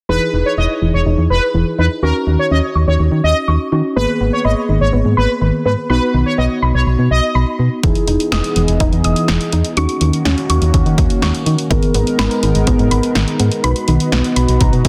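A driving synth-pop groove at 124 BPM in straight 4/4 sets a cool mood, with a solid, round FM bass sitting up front from the start, dark and punchy with a fast, decaying attack. Over it, muted, felt-like synth keys with a vintage, warbling chorus supply intimate accompaniment, while a soft, round pluck traces arpeggios through chorus, low-pass filtering and tape echo, its filter sweeping across the first 7.8 seconds. A bold, nasal analog synth brass carries a second line with vibrato and tape echo until 7.2 seconds. At 7.8 seconds a dry, punchy analog drum machine arrives with kick, snare and hi-hat, joined by a smooth, mellow analog pad holding sustained chords under chorus. The harmony cycles twice through Emaj7, D#m7, G#madd9 and B, and the keys add a brief fill near the end, all set in a moderate plate reverb and a dense, heavily limited modern master.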